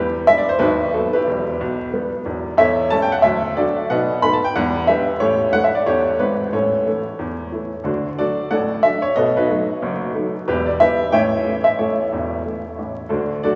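Playful and swinging, this short stride-piano jazz cut features a solo upright piano with a clear, woody, natural tone and short sustain, placed up front and ranging from deep bass notes to bright upper registers. The piece moves through a chord sequence centred on E minor, A7 and D, shifting into a new section at 7.9 seconds before the cut ends at 13.6 seconds. The recording carries a long cathedral-style reverb alongside a hint of small-room ambience and a layer of vinyl crackle, lending it an old, echoing character.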